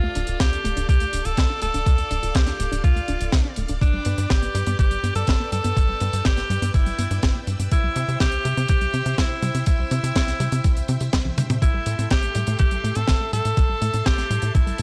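An edgy, close-miked alto saxophone leads this bittersweet, nostalgic italo disco excerpt at 123 BPM, its forceful pop-style lines full of scooped notes and trailed by tape echo. Beneath it, a tight sequencer bass drives hard with a dark, punchy sawtooth tone, while a thumpy electronic kick, re-recorded in a large room, anchors the straight 4/4 pulse. A tight funk drum kit recorded in a small room adds mid-forward hi-hat, toms and a high-tuned snare, with a brief fill at 11.3 seconds. A lush string machine sustains soft-attack chords through an ensemble chorus, and a detuned unison pluck sits in the background with short-decay arpeggios fed through analog delay. The chords move from Dm through G and C to Am7, and the whole excerpt carries a dry, gritty cassette-tape character with a small room reverb.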